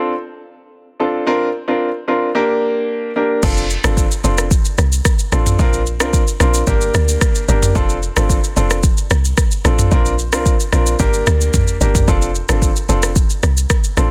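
Joyful and romantic, this afrobeats clip, cut from a longer piece, opens with a clear concert grand piano playing alone, moving through F6, Bbadd9 and Gm chords. At 3.4 seconds a woody, punchy log drum bass with a fast attack and mellow decay joins, alongside an electronic afro-pop drum kit with a deep kick, rim clicks, shaker, toms, crash cymbal and a softly clipped snare. The close, dry sound puts every part up front in a dense, heavily limited modern master.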